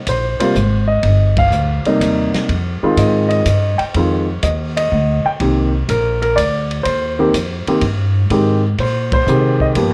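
Cool and late-night, this jazz piano trio swings in 3/4 at 124 BPM in C minor, moving through Cm7, Fm7 and Abmaj7 as a fragment cut from a longer piece. An up-front grand piano carries the melody over woody pizzicato upright bass, while a vintage acoustic kit with dark cymbals on ride and hi-hat, a medium-tuned snare and a punchy kick sits further back. The band hits accents together at 1.3 and 9.0 seconds, and the whole recording has light reverb and a worn, warbling cassette-tape pitch drift.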